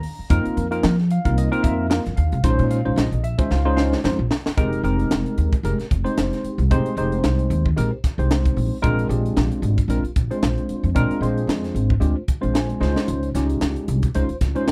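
A worn, slightly out-of-tune tine electric piano with analog chorus opens this nocturnal, slick slice of electric jazz fusion alongside a crisp drum kit with a high-tuned snare and punchy kick, and a woody, growly pizzicato upright bass joins at 0.2 seconds. At 113 BPM in 4/4 with a swung sixteenth-note feel, the piece moves from Bb minor to F minor at 4.6 seconds, just after a drum fill, as lush chords like Fm11, Bb9 and Dbmaj9 unfold. Near the end the electric piano adds a short fill while the drums fill again at 12.8 seconds, all in a dry, close mix with the parts up front.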